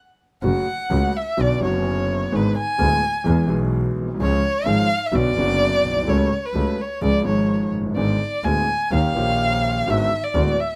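After a brief silence, a sultry, dramatic tango excerpt cut from a longer piece opens at 0.4 seconds at 127 BPM in a rubato 4/4, with an up-front, expressive bowed violin taking a solo full of vibrato, soft attacks and portamento over an intimate, vintage-sounding concert grand piano with deep bass and audible action noise, and a focused, close bowed double bass with vibrato, all in light reverb, as the harmony moves from F#m through G#dim and D#7 to a G#m7b5 before the violin's last note ends at 10.8 seconds.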